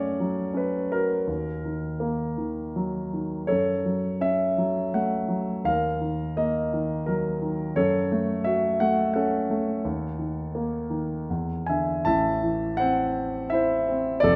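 Classical solo piano in a cool, brooding mood, moving in a rubato 3/4 at roughly 76-88 BPM and tuned to A4 = 442 Hz. A warm, natural-sounding concert grand sits up front with a deep bass, spanning F1 to A5 as its harmony circles between F#m and D#m, then reaches E7 before turning to Am at 12.1 s for a new section. A moderate concert hall reverb with a 1.8 s decay surrounds the piano throughout this 14.4-second excerpt.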